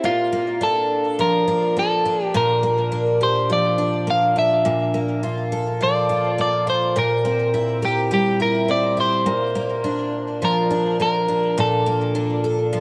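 A picked twelve-string acoustic guitar opens with shimmering, octave-doubled arpeggios, its finger squeak audible up front under a subtle chorus and digital delay. From 0.1 seconds an electric guitar at the edge of break-up carries the melody, twangy and scooped in tone, with its own digital delay. This short dream pop section moves at 104 BPM in straight 4/4, in Bb lydian with tuning at A4 = 441 Hz. The chords drift from Bbmaj7 through Gm7/Bb and C7/Bb before settling back on Bb and Bbmaj7, giving a floating, ethereal mood. A moderate plate reverb with a long tail surrounds the two guitars, giving the acoustic guitar an auditorium-like sound while both stay close to the listener. The passage is cut from a longer piece and runs to 12.8 seconds.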